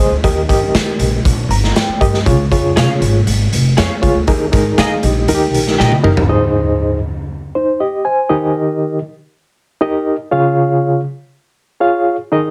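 Heavily compressed with light reverb, like an old radio broadcast, this joyful cut from an uptempo 1960s-style soul piece in Ab major at 119 BPM rides on a reedy, up-front electric piano with fast tremolo, backed by a woody, dark pizzicato upright bass and a gritty, saturated garage drum kit with a punchy kick in a pumping stone room, while a twangy, slightly broken-up electric guitar through a small old amp adds chorused stabs from 2.8 s, and after a drum fill the bass and drums stop at 6.3 s, leaving the electric piano alone until 12.5 s.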